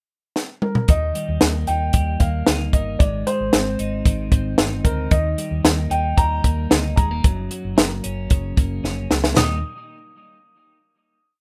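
A compact cocktail drum kit opens this short, breezy piece of jangly indie pop with a fill at 0.4 seconds, its high-tuned snare, punchy kick and dark cymbals sitting dry and up front in a brisk backbeat at 113 BPM in 4/4. The dark upright piano joins almost at once and carries the melody in song-like motifs, its woody, mellow tone long in sustain, with audible action noise that lends an intimate, vintage feel. At 0.9 seconds the verse begins in Eb major, and a twelve-string electric guitar enters with a bright, twangy fingerpicked roll pattern, compressed and bathed in spring reverb. A hollow-body short-scale electric bass enters with it, playing a round, amped eighth-note line that drives the chords from Eb through Ab and back, then to Gb. A second drum fill at 8.8 seconds leads into a final Eb chord at 9.4 seconds, closing the nostalgic little tune inside a moderate room ambience and a rough home-demo mix.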